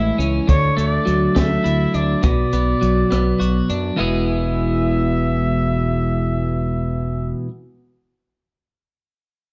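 A clean, compressed twelve-string electric guitar sits up front with a jangly riff soaked in spring reverb, setting a carefree indie rock mood in a lilting 6/8. Beneath it, a growling fingered electric bass adds overdriven grit, while a distant, roomy trumpet sings a pop-style solo melody with light vibrato and scooped notes over chords moving from Dadd9 to Bm and arriving on E at 4.0 s. A compact cocktail drum kit, dark and smooth with a high-tuned snare and punchy kick, drops out at 3.8 s, and the band's live, single-room sound carries moderate reverb and a softened top end in this short section cut from a longer piece.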